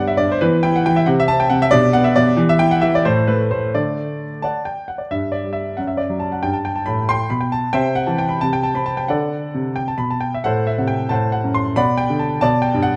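Playful and graceful, this fragment of a classical-period piano sonatina in G major moves at 90 BPM in 6/8 with free rubato, its solo concert grand sounding clear and up front with a deep bass, set in a moderate recital-hall reverb within a dark production, and shifting into a new section at 5.1 seconds.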